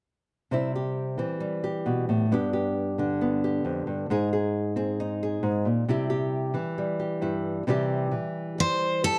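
A small, warm-toned, fingerpicked nylon-string guitar opens this hopeful, tender acoustic folk-pop ballad at 67 BPM in C major, moving through C, G and Ab chords up close in a moderate large-studio reverb, until a bright, full-bodied jumbo steel-string guitar enters at 8.6 seconds with a brief picked melody just before the cut.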